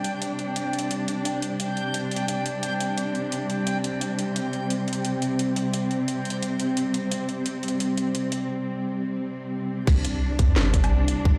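Half-time drum and bass at 174 BPM with a heavy, spacious mood, cut from a longer piece, opens on a Csus2 chord as an intimate, bowed cello section holds sustained chords with light vibrato and sidechain pumping over a drum kit of cracking snare, metallic hats, crash and woodblock, while a reversed, dreamy, granular texture hangs high until 8.5 s, then after a break a deep, saturated sub bass and a tight, up-front electronic kick arrive for the drop at 9.9 s, all set in a huge ambient reverb.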